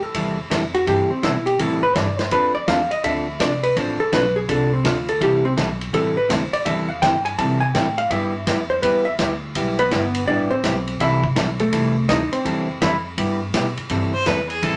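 A brisk swung pulse at 166 BPM in 4/4 drives this playful western swing excerpt in C major, with the eighth notes leaning into a lilting swing. Upright bass anchors the low end with a woody, thumpy pizzicato tone from gut strings, while a vintage drum kit of kick, snare, hi-hat and ride adds punchy, rolled-off color roughened by a grainy 12-bit sampler texture. Two vintage hollow-body electric guitars carry the harmony and the lead: one comps underneath in a clean, dark voice, and the other, compressed and up front, takes a picked solo from the start until about 13.9 seconds. The changes move through C6, F6 and G6 sixth chords in a light, swinging cycle, all sitting in a modest studio room. Just at 14.1 seconds a clear fiddle enters, bowed with light vibrato and a biting, nasal, earthy edge, as the passage cuts off.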